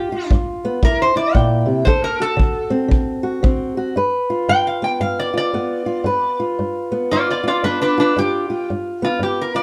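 A lap resonator guitar takes the lead, played with a steel bar and fingerpicks, its metallic, nasal slide voice sitting up front as it carries the melody through a short, rollicking stretch of acoustic country blues in G mixolydian. Beneath it, an old ladder-braced acoustic guitar is fingerpicked on aged strings, giving a woody, boxy accompaniment. A kick drum, punchy yet roomy and distant, joins at 0.3 seconds and drops out at 3.6 seconds. The groove moves at 114 BPM in 4/4 with a 62 percent swing on the eighth notes, and the harmony cycles through G7, C7 and D7 before returning to G7 at 4.0 seconds as the same passage begins again. Moderate studio reverb and a dark, warm production give the soulful fragment, cut from a longer piece, a warm glow.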